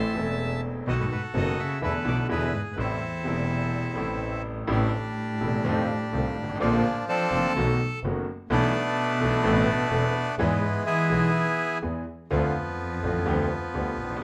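Rubato 4/4 at 126 BPM sets a passionate, sultry tango in A minor, cut from a longer piece. A reedy, up-front bandoneon carries the melody over a single bowed cello second line full of vibrato and portamento, while a brilliant concert grand piano accompanies with deep bass and one bowed double bass, biting and earthy with light vibrato, anchors the low end. Moderate large-studio reverb surrounds the ensemble, and at 4.7 s a new passage moves through F7, Bbadd9 and B7 before returning to Am.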